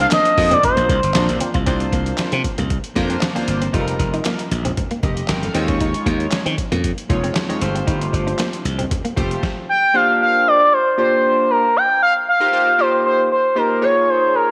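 An expressive, smooth synth lead with chorus, slapback echo and vibrato sits up front, singing briefly at the opening and returning from 9.7 seconds in this late-night, slick early-eighties boogie funk cut in C minor at 116 BPM, over a glossy, retro chorused polysynth that holds sustained sawtooth and pulse-wave chords with filter sweeps through suspended ninth harmonies from start to finish. Until about 9.4 seconds, a glassy, growly slap bass punches up front alongside a gritty, tape-warm, pitched-down sampler-style drum kit with a thumpy kick, handclaps, hi-hat and a medium-tuned snare, while a clean, fingered electric guitar riff with ensemble chorus tucks into the background and ringing, low-tuned congas sit very quiet. A moderate echo-chamber reverb lends the whole a roomy sheen before the lead and polysynth carry the final seconds alone.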